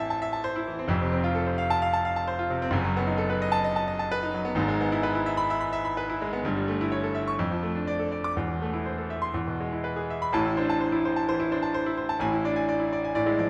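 A bright, brilliant concert grand piano plays alone throughout this passionate, agitated classical virtuoso study, its polished, up-front tone ranging from deep bass to high treble with a short sustain. Cut from a longer piece, it moves at 129 BPM in 4/4 with a free, rubato feel, tuned to A4 = 439 Hz, working through A minor harmony with dominant chords such as B7 and E. A moderate recital hall reverb surrounds the present sound, and a new section begins at 10.3 seconds.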